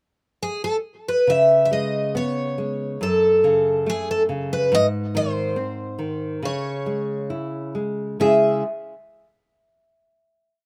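Lightly reverberant and recorded in open air, this short, mournful fado-style ballad in C# minor drifts at a rubato 69 BPM in 2/4, as a shimmering, octave-doubled twelve-string guitar picks longing hook phrases up front from 0.4 s, and a fingerpicked classical nylon-string guitar joins at 1.3 s with bass notes and broken chord figures through C#5, F#m, G# and C#m, both guitars ending at 8.6 s.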